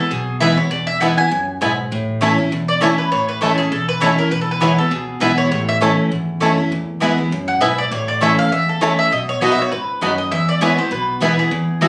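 Joyful and lively, this bluegrass excerpt races along at 200 BPM in A major with a light swing on the eighth notes, cut from a longer piece. Up front, a woody, double-strung mandolin carries the melody with a touch of plate reverb, while a full-bodied dreadnought acoustic guitar, picked, drives the accompaniment from the opening moment. A pizzicato upright bass with gut strings adds a thumpy pulse from the background, and at 0.4 seconds a twangy, percussive banjo played with fingerpicks joins on melody, coloured by slapback echo and plate reverb. A second, mellower mandolin enters at the same moment with picked stabs. The chords move between E and A, with a B chord arriving at 9.1 seconds in the second section, and the whole performance sits in a small room captured on a phone, with added studio reverb and compression.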